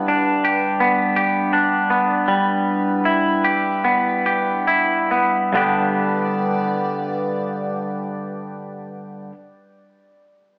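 Post-rock with a hopeful, cinematic mood, cut from a longer piece, in which a bright, twangy, clean electric guitar plays picked arpeggios up front over a dark, morphing wavetable pad holding sustained chords with chorus and its own reverb, the music slowing down through the first 5.6 seconds as the harmony moves from G to Em/G and back to G, all heard as a band playing live in one room through a small speaker with wet studio reverb.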